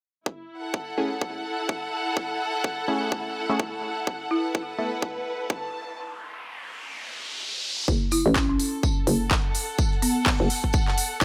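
A punchy, tape-warm electronic kick drives this bouncy, aggressive bass house cut at 126 BPM in 4/4, with a 58% swing on the 16ths, in F# minor over F#m7, Esus4 and F#m chords. A lush, bowed string section with vibrato holds a close, sidechain-pumped texture throughout, while a nasal, band-passed sawtooth chord stab, detuned and ring-modulated, flickers through phaser and digital delay in the opening stretch. A woody folk marimba with medium hard mallets adds a brief dry, rustic phrase before returning as the delayed melody. An electronic riser builds tension from 5.5 s until 7.9 s, when a hollow, knocking FM bass with overdrive arrives up front alongside a warm brushed kit of hi-hat, snare and tambourine sitting in the background. From 8.1 s a layered big-room kit adds handclaps and crisp hats, all set in a light reverb and small room ambience.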